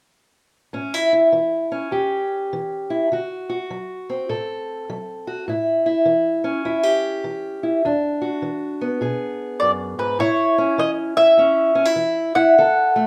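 A dark, boxy parlour steel-string acoustic guitar fingerpicks a swinging, swaggering country blues accompaniment through A7, D7 and E7 in a gritty, rough home-demo mix, until a woody, double-strung mandolin joins up front with a picked melody at 9.6 s, both instruments dressed in plate reverb to the end of this fragment at 13.1 s.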